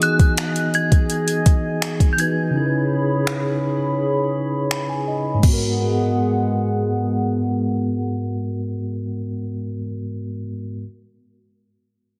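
A chiming, inharmonic FM synth chime with ensemble chorus and delay opens this moody, sensual contemporary R&B fragment at 83 BPM in G# minor, alongside a mellow tine electric piano, a hollow, flute-like pad and an up-front electronic drum kit of soft kick, metallic hats, finger snaps and crash; the harmony moves from Emaj7 to C#m7 under a filter sweep, with a break at 2.5 seconds and an electric piano fill leading into G#m7 at 5.4 seconds, set in a lush hall reverb on a dense, heavily limited master.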